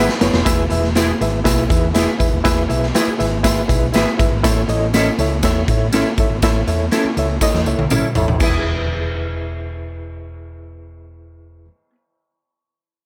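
A gritty, saturated drum fill in a pumping stone room opens this uplifting, joyful 1960s-style soul excerpt, alongside a reedy, lightly overdriven electric piano with medium tremolo up front, clean chorused stabs from a semi-hollow electric guitar, and a dark, round fingered hollow-body bass. A close, jingly tambourine joins at 0.2 seconds. Another drum fill arrives at 7.4 seconds, and after the drums and tambourine stop near 8.5 seconds, the piano, guitar and bass carry on alone in a small room.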